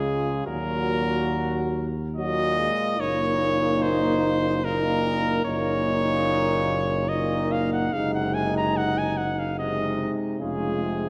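Classical hymn-like brass band music, lyrical and tender in a rubato triple metre, with a warm cornet carrying the melody up front over a French horn section's second line touched with light vibrato, a mellow euphonium and a clear, present trombone in the background, and a dark, soft-attacked tuba on the bass, the ensemble heard in a reverberant concert hall.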